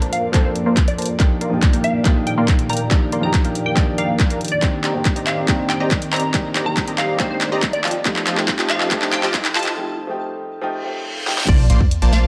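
Future bass at 140 BPM in a half-time feel, this euphoric, lush build-up in Bb major moves through Bbmaj7, Ebmaj7/Bb, Cm9 and F7 as a punchy, detuned supersaw stab riff and a glassy, crystalline wavetable pluck melody with chorus and delay pump against a dark, intimate baby grand piano and a very quiet, breathy pad, while filter sweeps move across the synths. An overdriven trap kit with a sharp snare and bright hats sits up front alongside a hard-clipped electronic kick, with drum fills running until a break at 9.8 s, and a riser, reverse cymbal and sub drop creep in quietly from 6.9 s. At 11.5 s the impact lands on Bbmaj7 as a deep, thick saturated sub bass arrives on Bb1, all set in a moderate digital room reverb.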